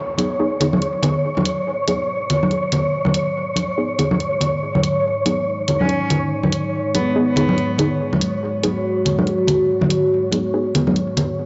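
Heavy and brooding, this short deep dubstep excerpt moves at 142 BPM in a swung, half-time 4/4, resting on a single G# minor chord. A dark analog pad built from sawtooth and triangle waves with a sub octave holds sustained chords under chorus and phaser, a filter sweep running across it through the whole passage. Above it sits an airy, breathy, wind-like noise texture tuned to C#5, while a muted, detuned sawtooth chord stab plucks through chorus and dub echo. Bright, layered electronic hi-hats and up-front congas played with soft hands drive the groove, the congas also trailing dub echo, and a very quiet downlifter and riser mark the opening and the final moments. A single bowed cello, floating and pure with a smooth top, plays a brief melody from 5.8 to 7.9 seconds through a low-pass filter and dub echo. A lush hall reverb surrounds the gritty, saturated cassette-tape sound, whose top end is dulled above 7.7 kHz.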